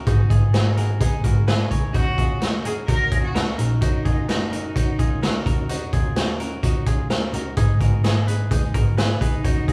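Jangly indie pop at 128 BPM with a restless, wistful mood, this brief cut from a longer piece rides a punchy, gritty garage drum kit up front, a round, foam-muted electric bass in the background, a shimmering, woody twelve-string acoustic guitar, twangy, bright clean electric guitar arpeggios and a reedy, overdriven combo organ with heavy vibrato sitting very quietly underneath, while an intimate, airy-bowed cello with slapback echo carries the melody from 1.9 to 5.4 seconds and returns at 9.2 seconds over an Abm, Ebm7 and Gb6 progression, all captured as a band playing live in one room with light reverb and a faint mains hum.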